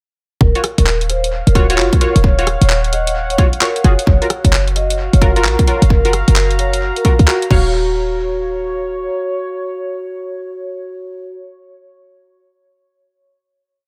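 A soulful, skippy two-step UK garage piece in Eb minor at 131 BPM opens at 0.4 s with a mellow soft-mallet vibraphone riff trailing tape echo over a tight, punchy 808-style bass line and an up-front two-step kick, as syncopated chord stabs with 12-bit sampler grit, chorus and dub echo and a garage kit of bright skipping hats, rim clicks, handclaps and crash through analog delay join in, followed by a warbling lo-fi pad pumping under sidechain, the drums stopping at 7.6 s and the bass soon after so the vibraphone, stabs and pad ring out in an echo-heavy digital ambience until 11.4 s.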